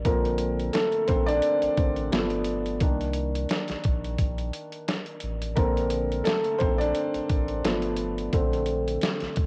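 A felt-muted upright piano sits up front and carries a solo across the whole 9.5 seconds, its soft, mellow tone softened further by cassette tape and edged with audible action noise that gives it an intimate, natural feel. This is a dreamy, nostalgic lo-fi hip hop fragment in Bb major at 87 BPM in 4/4, with a gentle swing on the sixteenths. A dusty soul sampler-style drum kit, also up front and run through cassette tape, supplies a gritty, compressed groove of thumpy kick, medium-tuned snare and hi-hat. Beneath them, a soft dub sub bass adds a deep, round tone that blends triangle and square waves with a fast attack and sustained notes. The harmony moves through Bbmaj7, G7 and Cm7 before circling back to Bbmaj7, and a moderate spring reverb and home cassette recording lend the whole cut, taken from a longer piece, a hazy, lived-in character.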